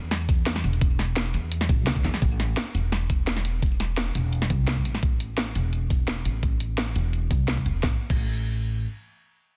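A plucked upright bass opens this brief, rolling cut of liquid drum and bass, its woody steel-string tone sitting up front and setting a melancholic mood from the very start. Within moments a garage drum kit and an electronic kick drum join, arriving as the track is already in a drop that runs to 2.2 seconds. The kit is layered and produced, with a cracking snare, warm hi-hats, crash cymbal and tambourine, and it was re-recorded in a small room that keeps it close and present. Beneath it the sampler-style kick is compressed, gritty and thumpy, carrying the most weight of the rhythm parts. The drums stop at 8.2 seconds, letting the bass ring alone until 8.8 seconds. The sound is dry and dense, with a heavily limited modern master that keeps the groove tight and forward.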